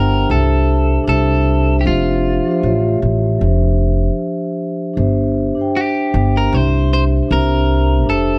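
A gently swung 4/4 pulse carries this nostalgic, reflective lo-fi hip hop fragment, cut from a longer piece, where a woody pizzicato upright bass sits up front beside a mellow, ringing vibraphone played with soft mallets and motor off, while a picked, slightly broken-up electric guitar sings a compressed melody through plate reverb, as does the vibraphone, over shifting jazz-tinged chords in a dark, warm production with light room reverb.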